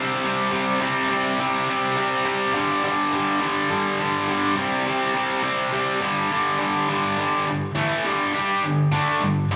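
A straight 4/4 rock pulse drives this short, sunny and confident clip, cut from a longer piece. A single tight electric guitar carries it alone from start to finish, picked and double-tracked, sitting up front with a bright, distorted bite and a slapback echo. Its part moves between C5 and G5 power chords, opening on C5, shifting to G5 at 2.5 seconds, and cycling back again. At 7.2 seconds the music turns into a new section for its closing stretch. The sound is that of a live gig heard through the venue's PA, with light club reverb giving the guitar a sense of the room around it.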